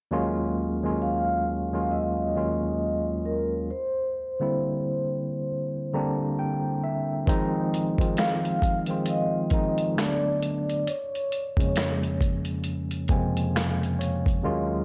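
Swung sixteenths give this hazy, melancholic lo-fi hip hop piece an unhurried lean in 4/4, though the sampler-style drum kit holds off until 7.3 seconds. When it arrives, its thumpy kick, medium-tuned snare, hi-hat and finger snaps sound compressed, pitched down and muffled, re-recorded in a large room yet sitting up front. A clean tine electric piano carries the accompaniment from the start, heard as if through built-in speakers and dulled by cassette tape and a low-pass filter, moving through chords such as Ebm11, C7, Fm7 and Bbm9/F and slipping in short fills around 5.5 and 12.6 seconds. Over it, a vibraphone struck with soft mallets sings a narrow melody, metallic and ringing with a slow motor vibrato, its mellow, vintage, band-limited tone trailed by analog delay. A moderate spring reverb and worn, warbling old tape with drifting pitch color the whole mix, and the passage is cut from a longer piece.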